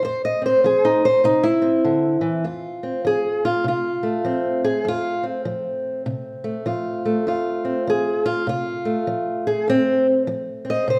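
Rollicking and swaggering, this short acoustic country blues excerpt in F major swings at 100 BPM as a single old ladder-braced guitar, fingerpicked with a dark, boxy, woody tone from aged strings, sits up front in light reverb, moving from F5 to C and back to F before taking a solo from 2.4 seconds.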